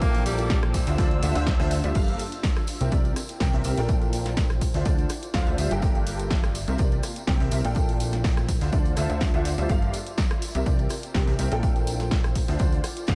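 A lightly reverberant small-room sheen frames this energetic, bittersweet piano house excerpt in G dorian at 124 BPM, where a clear concert grand with audible action noise drives a riff through chorus, tape echo and sidechain pumping over a plucky, funky analog bass, an up-front punchy electronic kick, a punchy analog drum machine, a very quiet high-tuned jazz kit and a background tambourine. A bright tenor saxophone and dark, veiled con sordino strings appear only briefly in the opening drop, as a cloudy granular pad drifts in from 0.2 seconds over chords moving among Bbmaj7, Dm9, Gm9 and C7.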